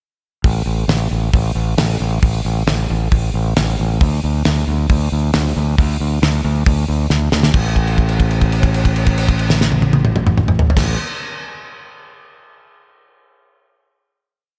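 A growling fingered electric bass anchors this short, swaggering classic rock piece, its bright, overdriven tone driving a line of eighth notes in the low register from 0.4 seconds. Beside it, a damped 70s drum kit sits up front with a fat snare and a tight kick, laying down a big rock groove on crash, hi-hat, kick, snare and toms. The mood is sunny and confident, with a straight feel in 4/4 and a sound that stays dry and direct under a light reverb. After a riff, a drum fill at 7.1 seconds leads into a held final note from 7.5 seconds. Both parts ring out together until 10.9 seconds, closing the whole piece.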